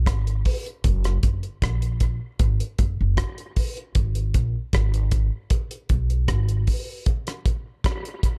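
A woody, thumpy pizzicato upright bass opens this heavy, meditative dub reggae excerpt up front. It is joined almost at once by a cloth-damped, thuddy drum kit with a tight kick, rim click, hi-hat and a rolled-off top in a small, dry room, and the drums carry on alone after the bass stops at 6.6 seconds.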